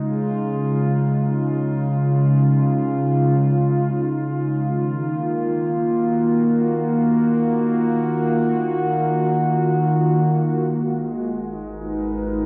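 Ambient music in free time, this serene, spacious piece is cut from a longer work and tuned slightly sharp to A4 = 441 Hz. A warbling, tape-like pad sits up front throughout, holding sustained chords from C#3 to B4 with a detuned, nostalgic lo-fi character, slow attack, chorus and its own built-in reverb. The harmony moves from C# to D#m at 4.6 seconds, then to G#m9 at 10.7 seconds, where a round sine sub bass enters on G#1, deep and sustained beneath the pad. The whole piece sits in a wet concert hall reverb with a 2.5-second decay, giving a dark, warm production its spacious air.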